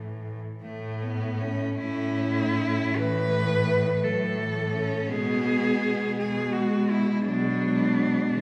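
A focused, vibrato-laden cello carries the melody from 1.8 s, sitting up front in this yearning, solemn classical passage for a cello ensemble, cut from a longer piece and moving in 12/8 with rubato. A second bowed cello, also close and focused, shapes an inner line, while a smooth, even accompanying cello sits in the background and a distant bass cello anchors the harmony beneath. The rich ensemble sound unfolds in a reverberant recital hall heard from further back in the room, with the harmony shifting to a B minor sixth chord at 5.1 s.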